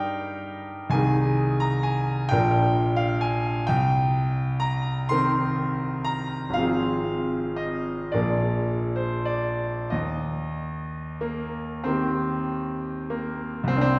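A bright, brilliant concert grand carries this tender, nostalgic romantic nocturne alone, its deep bass and long sustain sitting up front within a wet scoring-stage reverb. The music moves at a slow, rubato 12/8 in Eb major, drifting through Eb/G, Ab/C, Cm7 and Fm/Ab before a Bb7 settles home on Eb at 9.9 seconds. This 14-second excerpt is cut from a longer piece, with an open sound.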